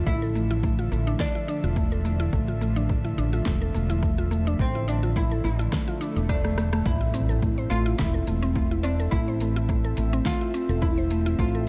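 A dark, dry mix carries this earthy, organic downtempo fragment in A minor at 106 BPM, its 16ths lightly swung, moving from Dmadd9 to Am at 6.9 seconds. An up-front, round fretless electric bass pumps beneath a breathy, chorused pad, while a woody, mallet-like FM pluck spins tape-echoed arpeggios and a bright, plectrum-plucked oud sings a delayed melody on its double strings. An overdriven, punchy electronic kick and a deep house kit with fat snare, metallic hats, rim click and shaker drive the groove, with a drum fill at 6.3 seconds and a very quiet electronic swell rising from 6.0 seconds into an impact at 6.9 seconds to mark the shift.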